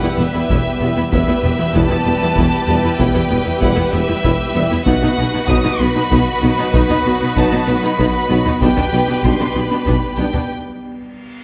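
Brooding and vast, this cinematic hybrid orchestral and electronic film-score excerpt in E minor moves at 64 BPM in 6/8, with a warm, smooth violin section with light vibrato carrying the melody over a lush second violin line and a focused viola accompaniment, a deep, evolving sawtooth ambient pad with chorus, a rich cello section, a dark bowed double bass section with portamento, a distant tuba and a very quiet, roomy French horn section, all joined by close, dry taiko hits and set in a moderate concert hall reverb, before a break at 10.5 seconds where a huge reverse cymbal enters at 10.9 seconds.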